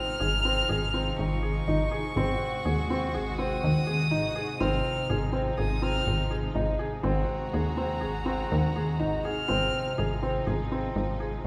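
A reverberant recital-hall sound, like a church or concert hall, surrounds this short cut from a longer piece of contemporary chamber music in 5/4, moving at a straight 123 BPM in Ab mixolydian with a playful, shimmering mood. Up front, a felt-muted upright piano plays mellow, intimate arpeggios in the middle register, while a plucky analog bass enters at 0.2 s with punchy, funky, wave-folded tones and a fast-attack filter pluck that decays. A single dark violin carries the melody high in its range, bowed sul tasto with light vibrato, a soft attack and a smooth top, until it stops at 10.2 s. Behind them, a rich studio string section holds sustained, evenly bowed ensemble chords with vibrato through to 11.5 s. The harmony opens on Dbmaj9/Ab and then moves between Ab7 and Ab6.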